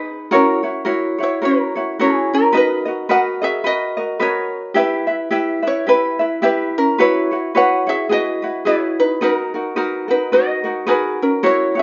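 Dreamy and sunny, this short Hawaiian excerpt drifts along at an easy swing in four. Two fingerpicked acoustic ukuleles play together up front for the whole 11.8 seconds, one carrying the melody and the other supplying the accompaniment beneath it. Both have a light touch, and their warm tone gives the pair a soft glow. The harmony moves from F#7 to Bmaj7 and Em, then passes through F#7sus4 and F#9sus4 before settling back on Bmaj7 at 9.2 seconds. The sound is of a small group playing live in a large studio, with a moderate reverb that adds airy space and a rounded, mellow top end.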